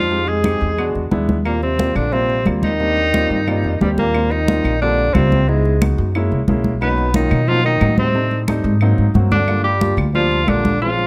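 Close, detailed microphones and light reverb frame this sunny, danceable stretch of Afro-Cuban jazz in Eb major at 180 BPM in 4/4, where a clear, vintage-toned tenor saxophone with vibrato carries the melody up front over a trombone second line with soft attack and scooped notes, a dark, thumpy pizzicato upright bass on gut strings, a polished, present grand piano with short sustain comping through chords such as Fm9, Gb9 and Am7b5 and adding a fill at 3.5 seconds, warm, thick-skinned congas played close and dry, and woody, saturated claves sitting in the background.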